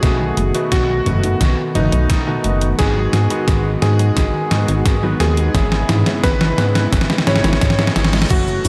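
Cinematic and nostalgic, this synthwave passage, cut from a longer piece, moves in a straight 4/4 over a B7, G#m7 and E6/G# progression. A clear, vintage electric grand piano carries the melody with chorused unisons and long sustain, coloured by tape echo and shimmer reverb. Behind it, a smooth, detuned analog pad holds sustained chords with chorus and sidechain pumping, while a bright baby grand piano adds intimate stabs with audible action noise and a very quiet, warbling, lo-fi pluck traces dusty arpeggios. The glossy, mellow chorused synth bass pumps underneath, joined by a thumpy, overdriven electronic kick and an up-front gated 80s digital drum machine whose cabasa, hi-hat, snare, toms and crash play a fill running through to 8.3 seconds. A faint reverse cymbal rises from 7.8 seconds into an impact at 8.3 seconds, and a lush hall reverb frames the whole mix.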